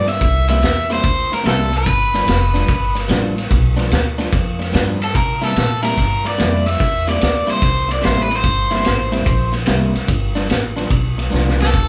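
A swung 4/4 shuffle drives this rollicking, swaggering electric blues excerpt, where a bright, overdriven lead guitar sits up front carrying the melody over a slightly broken-up riff from a guitar played through a small old amp, a woody, thumpy pizzicato upright bass and a gritty vintage drum kit of punchy kick, medium-tuned snare and dark ride cymbal, all moving between C7 and G7 in a moderately reverberant large studio room as a band playing live together, with a drum fill at 11.3 seconds.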